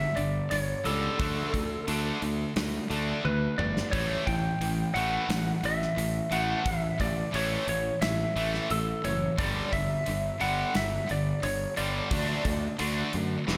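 A big arena sound bathed in lush hall reverb frames this anthemic, energetic hard rock excerpt at 88 BPM in A mixolydian, where a twangy, slightly broken-up lead guitar with slapback echo carries the melody over two background riff guitars (one overdriven with slapback, the other bright and high-gain), a growly fuzz bass sitting up front, and a gated 80s kit with a punchy kick that enters at 0.2 s and plays a fill at 3.2 s, all over a G5, D5 and A5 progression.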